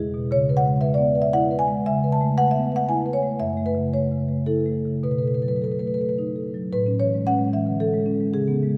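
In a rubato 3/4 that drifts between 102 and 119 BPM, this brief cut from a longer contemporary classical piece for solo marimba moves in a playful, flowing mood in A major. The soft-mallet marimba sounds mellow and round, sitting up front across a range from E2 to A5, while a deep church reverb with a 3.2-second decay surrounds it. Its harmony passes through C#m7, F#m7 and B7 before settling on Amaj7 at 6.7 seconds as a new section opens.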